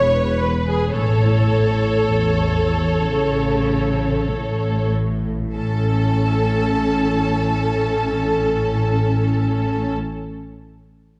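A string orchestra opens together, violins, violas, cellos and double basses sounding from the very start of this short passage cut from a longer piece, a slow romantic classical movement in A major and 4/4 at roughly 46 to 64 BPM. The feel is serene and tender, with a rubato pulse that slows down through the first 5.5 seconds as the harmony moves from E to A. One violin section carries the melody with a smooth, lush vibrato and a silken top, while a second violin section plays its own line with a clear, intense tone that sits further back. Violas fill in the accompaniment with a focused, distant sound, and the cellos, close and even with light vibrato, join the double basses in a rich, deep bass. A reverberant scoring-stage space and a dark production give the whole ensemble a soft glow, and the passage settles into a new section around 5.5 seconds.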